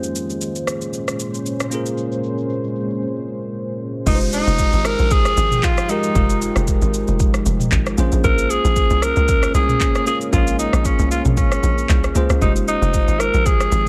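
A bell-like tine electric piano, a dark, moody ambient pad and an up-front afro-pop drum kit open this deep, late-night amapiano passage in F minor, moving at 115 BPM in 4/4 with a light swing on the sixteenths. The electric piano rings bright and clean with a subtle chorus, while the detuned sawtooth pad holds sustained chords through chorus, tremolo and its own reverb, and the electronic kit brings a deep kick, handclaps, rim click, shaker and toms. At 4.1 seconds a growling alto saxophone takes the solo melody, raspy and breathy with vibrato and a vintage tape echo, as a tight, punchy log drum bass with a fast attack and a noise layer enters beneath it. Alongside them, a downlifter sits in the background from 4.1 until 8.2 seconds. The harmony moves between Bbm9 and Fm9, and the echo-heavy mix with light reverb is cut from a longer piece.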